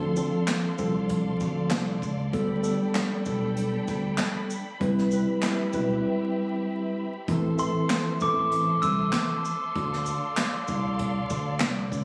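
This boom-bap hip-hop excerpt has a dark, reflective mood and a swung groove. A mellow tine electric piano sits up front with clean accompaniment chords, colored by a cassette-tape character, and falls away at 9.5 seconds. Beneath it, a growly, punchy fingered electric bass holds the low end. A jazz kit played with brushes brings a boomy kick, a medium-tuned snare, hi-hat, shaker and handclaps, joined by a very quiet, close finger snap. A lush bowed string section hovers softly in the background with expressive vibrato and a smooth top. At 7.6 seconds a bell-like glockenspiel, struck with soft plastic mallets, adds a brief high melody with a slapback echo, while the whole mix carries small-room ambience, light reverb, vinyl crackle and a lo-fi, phone-recorded quality.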